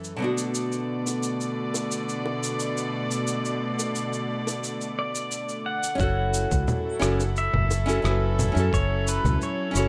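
A straight 4/4 groove of gritty, tape-warm electronic cabasa, congas and rim click, dotted with very quiet, high-tuned bongos, carries this wistful, smooth sunset chillout excerpt, where a fingerpicked nylon-string guitar with delay and a reedy, gut-string chamber string section hold Bm7 under light reverb until a bright, twangy pedal steel melody with delay and volume swells arrives at 5.0 seconds, and a round, dark fingered electric bass and a thumpy electronic kick drum enter together at 6.0 seconds as the harmony moves to F#m7.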